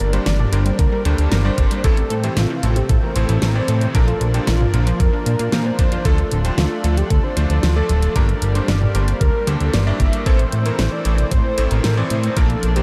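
A straight 4/4 pulse at 114 BPM drives this nocturnal synthwave excerpt, with a thumpy, up-front electronic kick entering at 0.8 seconds over a layered pop kit with a fat snare and a saturated, detuned analog bass moving through Gm, Am, Bb and Dm. A thick, detuned unison lead carries the melody through tape echo, while an airy pad pumps with sidechain and chorus in the background and a clangy, cutting electric grand piano adds stabs with delay. A round, chorused analog pluck spins arpeggios until 6.0 seconds, after which a very quiet, dark, clean electric guitar picks up a fingered riff at 6.1 seconds, all set in light digital reverb.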